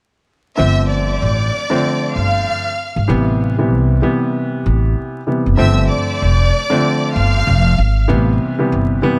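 A moody, gritty boom-bap hip-hop excerpt at 96 BPM in 4/4 with a 57% swing on the sixteenths opens at 0.6 s with a lush, bowed violin section carrying the melody high above, its expressive vibrato trailing tape echo, over a dark, mellow baby grand piano and a woody pizzicato upright bass, all up front. The harmony moves between G7sus4 and Am7, and a small room ambience with vinyl crackle gives the sound its worn texture. The violins drop out at 8.1 s, leaving piano and bass; the bass falls away at 9.0 s, and the piano closes out the passage at 9.2 s.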